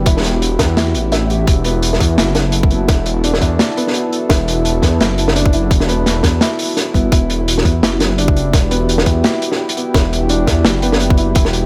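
From the very first moment, a felt-muted upright piano plays soft, intimate arpeggios, its boxy tone carrying audible action noise and trailing through tape echo. Beneath it, a dark analog pad holds sustained chords in the background, its detuned sawtooth body thickened by chorus and pumped by sidechain. A deep, rumbling detuned saw bass sits up front, its unison voices beating against one another. From 0.1 seconds the drums arrive in a half-time drum and bass groove with a light swing: a tight, layered electronic kick pushed forward, and a gritty, saturated breakbeat kit whose snare and hi-hat have a rolled-off top and a small-room character. The whole passage rests on a single Emadd9 chord under light reverb, giving a spacious, cinematic mood that feels cut from a longer piece.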